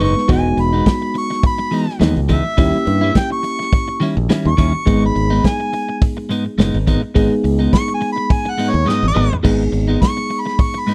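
A straight-eighth soul blues groove in 4/4 at 105 BPM, with a light 55% swing on the sixteenths, carries this soulful, mournful excerpt in G# minor, cut from a longer piece. A clear harmonica with light vibrato and scooped notes takes a jazz-styled solo across the whole clip, its tone roughened by overdrive as it moves between C#5 and C#6. Beneath it, a reedy electric piano heard through its built-in speakers supplies the accompaniment, while a clean, compressed electric guitar adds picked stabs colored by tremolo. A bright, direct fingered electric bass sits up front and drops out at 10.0 s, and the soul drum kit, tight in the kick and medium-tuned in the snare, has a rolled-off top and a distant, roomy booth sound, playing a fill from 8.9 to 9.4 s. The chords move from Emaj7 to D#7b9 and settle on G#m, all within a studio reverb.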